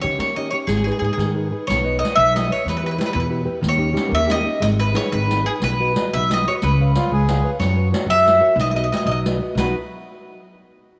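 Romantic and sunny, this Italian folk serenade in a straight 6/8 sets a bright, round, double-strung mandolin melody up front with a slapback echo over a thumb-plucked nylon-string guitar, a woody pizzicato upright bass with transformer saturation, and a soft-handed riq whose jingles sit distant in a large room, while a clear, reedy accordion slips in briefly at 7.0 s, all bathed in a moderate plate reverb.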